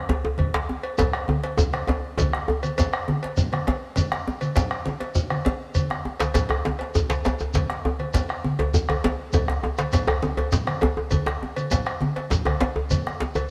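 A drum fill opens this powerful, earthy West African drum ensemble excerpt in a straight 12/8, with a round bombo, a deep djembe, a metallic cowbell and bright, low-tuned congas sounding together under light reverb, a grainy shekere joining at 1.0 seconds, and a tight, cracking second djembe sitting up front before dropping out at 2.6 seconds and returning at 6.2 seconds.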